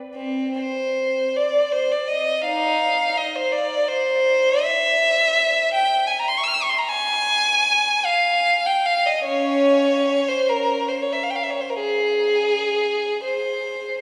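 A lone violin enters at 0.2 s, bowed with a rich, smooth tone and vibrato, carrying a lonely, meditative line in C minor that reaches from C4 up to F6. This is classical music for unaccompanied violin, played by one player with an even, expressive touch and a free rubato feel over a 6/8 metre. The tempo drifts between 34 and 57 BPM in dotted quarters, giving the phrases room to breathe. The violin sits up front, wrapped in a long cathedral reverb whose 5.4-second tail lets each note hang in the air of a church or concert hall. Tuned to A4 = 443 Hz, the 14-second passage is taken from a longer piece and ends as the violin stops at 14.0 s.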